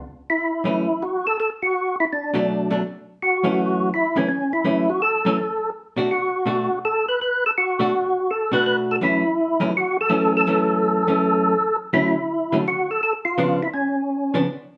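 Bluesy and soulful, this swinging jazz excerpt in F# minor moves at 165 BPM, with a fat, lightly overdriven tonewheel organ carrying the melody through a slow rotary speaker and chorus vibrato, its third-harmonic percussion giving each note a clicky edge. A dark, clean, compressed hollow-body electric guitar picks the accompaniment beneath it, both parts sitting up front as the changes cycle between F#m7 and Bm7 before turning through Dmaj7 to a tense C#7b9 near 13.4 seconds. The two play live together in one room, bathed in a wet studio reverb, and the clip is cut from a longer performance.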